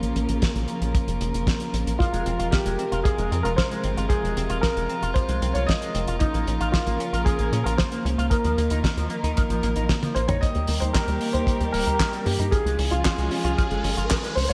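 A danceable, bittersweet italo disco cut at 114 BPM opens on intimate, softly bowed chamber strings sustaining a Bbm chord over a punchy, saturated sawtooth sequencer bass and a damped 70s kit with a fat snare, handclaps, hi-hat and toms, joined moments later by a tight, dry kick, before a warm grand piano takes the melody with analog chorus and digital delay from 2.0 s alongside clean, twangy envelope-filtered guitar arpeggios with spring reverb; after a drum fill, a filter sweep on the guitar begins at 10.4 s as the harmony moves to Eb and Db, and a background electronic riser enters at 11.9 s, all set in a bright 1980s-style digital production with lush hall reverb.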